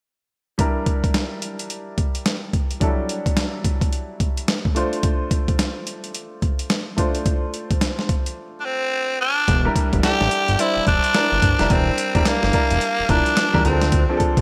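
A raspy tenor saxophone takes the melody up front from 8.6 seconds, its edgy, vibrato-laden pop-style solo riding over a confident, bouncy new jack swing groove at 108 BPM in 4/4 with a swung sixteenth-note feel. Beneath it, a dusty sampler-style drum kit of hi-hat, thumpy kick and medium-tuned snare sounds gritty and compressed, pushed forward with overdrive and gated reverb. A clear grand piano carries the accompaniment, moving between Em7b5 and Dm7 chords. After a brief silent gap, a fat analog bass arrives at 9.5 seconds with a thick, detuned sawtooth tone and a filter sweep, anchoring the second section. The bright 1980s-style digital production is wrapped in a lush hall reverb, and the clip is cut from a longer piece.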